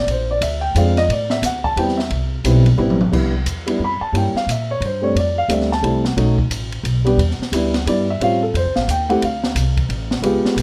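A dark, mellow grand piano sits up front, comping with short-sustained chords through this smoky, cool excerpt of small-group swing and bop played in 3/4 at 177 BPM with a loose eighth-note swing. The harmony opens around A minor, with chords such as Bb9 and Am9, then shifts to C major at 3.1 s, moving through Cmaj7, C7b9, F6, B7, Em7 and A7alt before landing on Dm7. An upright bass with gut strings carries the low end, its pizzicato tone woody and thumpy and placed close to the listener. The acoustic drum kit, recorded in a studio room, has smooth, shadowy cymbals, a high-tuned snare, a boomy kick and a rolled-off top, and it plays a fill from 2.8 s into the new section. Light reverb softens the group, and the instruments are tuned to A4 = 437 Hz.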